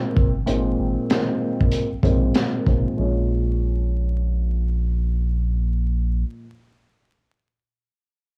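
A swung 96 BPM boom-bap hip-hop groove in Bb minor opens this dark, moody excerpt, with a gritty, saturated breakbeat kit of punchy kick, high-tuned snare and hi-hat carrying tape grit until 2.8 seconds, while a deep sine-and-triangle sub bass with octave holds the low end and a worn, woody, slightly detuned upright piano, its action noise audible, plays cassette-tinged, filtered accompaniment under a filter sweep before the harmony moves from Abadd9 to Bbm7 at 3.0 seconds, all in a dry, intimate home-cassette sound flecked with vinyl crackle.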